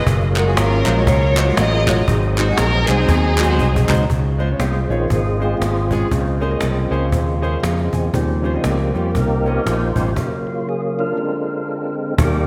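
Lush, bowed strings carry the melody over fat, lightly overdriven tonewheel organ chords with key click and a slow rotary speaker, opening this soulful, jubilant uptempo gospel piece at 119 BPM in Db major with a swung feel, joined by a round, punchy fingered electric bass, a snappy cajon, a clear, intimate grand piano and hollow group handclaps. After a drum fill and piano fill, the strings and handclaps fall away just before the organ takes a solo at 4.1 s, while a mellow, distant French horn section holds chords in the background, and the band hits a stop at 10.2 s. The dreamy mix is soaked in hall reverb as the harmony moves through chords such as Gbmaj9, Bbm9 and Eb13.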